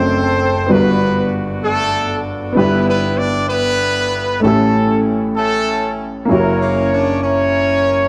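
In a straight 6/8 lilt at 65 BPM counted in dotted quarters, this hopeful, jubilant gospel excerpt pairs a tight, jazz-style horn section carrying the melody in octave doubling with light vibrato against an intimate grand piano accompaniment whose natural action noise stays audible, both placed up front in a dark, warm mix with light reverb as the harmony moves from D7/F# through Gmaj7, Em7/G and A7 to F#7.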